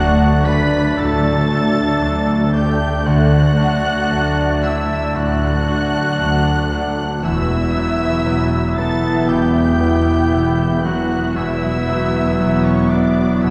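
A tender, moving cinematic excerpt at a slow, rubato 58 BPM in D major, where a veiled, con sordino violin section carries the melody over a second violin line, a clear clarinet, a hollow flute and a warm oboe, while a brilliant grand piano with audible action noise, a distant viola section, mellow French horn chords, a ringing harp and muted cello and double bass sections fill out a lush, reverberant concert hall as the harmony moves from D to Esus2 at 7.2 seconds.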